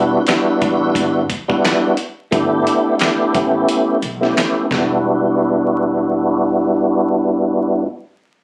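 This boom-bap hip-hop fragment, cut from a longer piece, settles into a moody, reflective groove at 88 BPM in 4/4 with a lazy 16th-note swing, centred on E dorian. A tonewheel organ sits up front, full and lightly overdriven through chorus vibrato and a slow rotary speaker, with a cassette-tape haze and a filter sweep across its first five seconds as it voices Em9, G69 and A9 before returning to Em9. Underneath, a pizzicato upright bass with steel strings sits in the background, woody and growly in its low register. A dusty, sampler-style kit of kick, snare, hi-hat and handclaps comes in at 0.3 seconds, compressed and gritty with a thumpy kick and medium-tuned snare; the kick drops out at 3.7 seconds and the kit stops at 4.9 seconds, leaving organ and bass for the closing stretch. The whole fragment carries a phone-in-the-room character, with studio ambience, a moderate short reverb and a layer of vinyl crackle.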